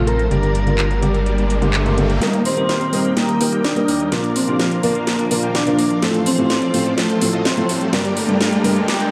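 A straight 4/4 pulse at 126 BPM drives this triumphant, uplifting festival progressive house excerpt, where a house drum kit with a cracking snare, metallic hats and handclaps enters at 0.1 seconds and moves into a drum fill and build-up from 2.2 seconds through a Gm, Eb, Bb, F/A progression. An airy, dreamy lead carries the melody with chorus, phaser and dub echo over a felt-muted upright piano with audible action noise, while a huge, euphoric supersaw riff gets a filter sweep from 2.2 seconds. Beneath them sit a thick detuned saw bass, a dark bowed string section playing sustained chords, and a background riser from 0.5 to 2.2 seconds, all in a dark production with light reverb.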